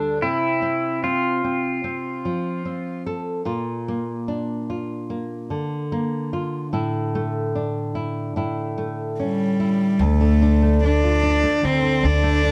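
A straight, unhurried four-beat pulse carries this heartbroken, reflective folk excerpt, cut from a longer piece. A dark, classical nylon-string guitar is fingerpicked up front throughout, with audible finger squeaks. Alongside it, a clean, twangy electric pedal steel guitar plays a second line with fingerpicks, slide and volume swells, its compressed tone dropping out at 3.0 seconds. The harmony moves through Bb and a suspended A before resolving to D minor just as a bass part enters at 10.0 seconds: a woody, pizzicato upright bass with steel strings. Just before that, at 9.2 seconds, a single bowed cello takes the melody, intimate and warm, with light vibrato, a soft attack and an airy bow. The sound is close and detailed, with very little reverb.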